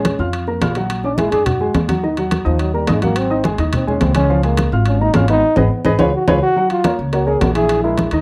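A breathy trombone solo with vibrato and scooped notes opens this sophisticated, danceable Afro-Cuban jazz excerpt at a brisk 212 BPM in Db major, up front over a dark, intimate baby grand piano with audible action noise, a woody, growly pizzicato upright bass, ringing metal-shell timbales and low-tuned, thick-skinned congas softly played by hand, with a band accent at 5.4 seconds and a drum fill at 6.1 seconds before the harmony shifts to F#maj7 at 6.6 seconds, all captured in a dry, close 1970s-style studio sound with light reverb.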